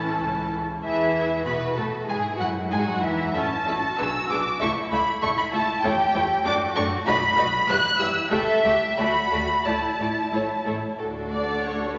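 All five sections of a string orchestra sound together from the opening moment, launching a quick, spirited classical-period movement in 2/4 with a flexible, rubato feel. The first violins carry the melody up front, their lush, vibrato-laden tone smooth and even as the line reaches as high as F#6. The second violins add a supporting line beneath, while the violas supply a focused, clear accompaniment that sits distant in the mix. Cellos in the background and double basses share the bass, with the basses reaching down to A1 and lending a rich, deep weight. This passage, cut from a longer work, rings in a concert hall reverb with a softened top end.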